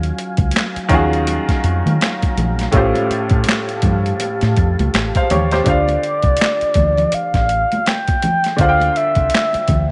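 A mellow, horn-like synth lead with chorus enters at 5.7 s as this sultry, late-night neo-soul R&B excerpt at 82 BPM with a swung 16th feel settles into D minor, floating over a clear, short-sustained baby grand piano, a round, punchy dub bass with tube saturation, a gritty, pitched-down boom bap drum kit with handclaps, a thumpy kick and a high-tuned snare, thin-skinned congas in the background from 0.5 s, and a soft, flute-like tonewheel organ on slow rotary speaker that holds sustained chords until 5.6 s, all in a light reverb.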